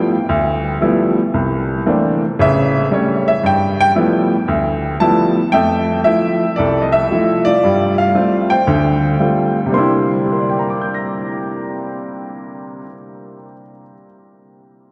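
A clear, woody upright piano sits up front with polished tone and long sustain in this sophisticated solo jazz fragment, cut from a longer piece, swinging at 114 BPM in C major through rich chords from G13 and C13 to Fmaj7, G9sus4 and a closing C9, all bathed in the wet reverb of a vast, echoing cathedral.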